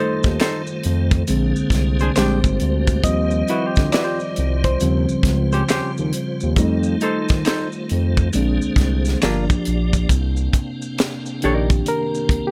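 A clean, reedy electric piano carries a solo through this late-night, soulful R&B and neo-soul excerpt, moving over F7, Bb9 and Eb69 before settling on Cm9 at 10.1 seconds. A dark, fingered hollow-body jazz guitar plays an up-front second line until 11.7 seconds, while a piping, scooped tonewheel organ holds sustained chords through a fast rotary speaker, light overdrive and chorus vibrato, with audible key click. A tight acoustic funk kit with a high-tuned snare and a smooth sawtooth-and-square synth bass sit up front in a swung groove, and vintage, band-limited maracas and finger snaps trail in the background of a small room.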